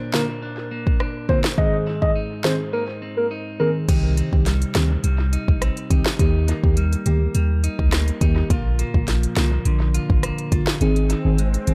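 A straight, bouncy dancehall groove in 4/4 drives this hypnotic, echo-heavy fragment, its electronic afro-pop drum kit up front with a deep kick, sharp snare and smooth hats, while dark, clean picked electric guitar arpeggios and soft, detuned, wave-folded chord stabs run throughout, a round, octave-layered synth lead with vibrato sings briefly before a break at 2.7 seconds, a punchy sine sub bass with a pitch-drop attack enters at 3.9 seconds, and the kick falls away at 10.8 seconds before an electronic swell arrives at 11.1 seconds.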